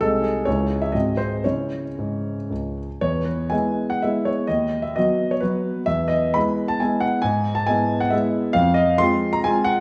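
Wistful and capricious, this short excerpt from a longer romantic classical piece is a triple-time dance for solo concert grand piano in 3/4 with dotted rhythms and rubato. It moves between 109 and 143 BPM and turns from C# minor to E major at 3.0 s. The piano sounds intimate, up front and natural, with deep bass, audible action noise and a wet recital-hall reverb around it.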